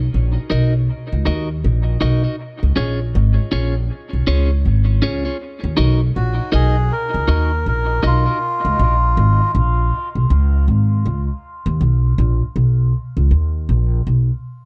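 Dub reggae at 80 BPM in Eb minor, this short cut from a longer piece feels deep and hypnotic, with a swung sixteenth-note lilt over a 4/4 pulse. A woody pizzicato upright bass sits up front and carries the low end from the start to 14.3 seconds, moving through Ebm and Db before settling on an Eb5 chord. A clean, picked electric guitar, compressed and treated with phaser and dub echo, joins at 0.5 seconds and plays accompaniment further back in the mix until 8.4 seconds. A reedy, nasal melodica with a vintage, band-limited tone carries a brief melody between 6.2 and 9.5 seconds, its line trailing into dub echo. The small room ambience and echo-heavy mix give the sparse arrangement an echo-soaked character.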